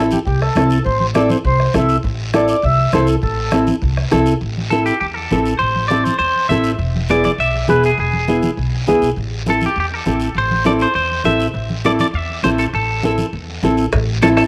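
A reedy, mellow accordion solo opens this passionate, fiery cumbia excerpt at a brisk 202 BPM in A harmonic minor, over a full-bodied fingerpicked nylon-string guitar, woody pizzicato upright bass, soft-handed damped congas, a raspy guiro and a soft-beaten bombo, before a bright, twangy clean electric guitar with spring reverb takes the melody up front at 4.7 s as the harmony moves from Am to E and back, and a ringing cowbell joins the returning bombo at 13.9 s, the accordion and both guitars carrying a cassette-tape tint inside a moderate booth-ambience home recording.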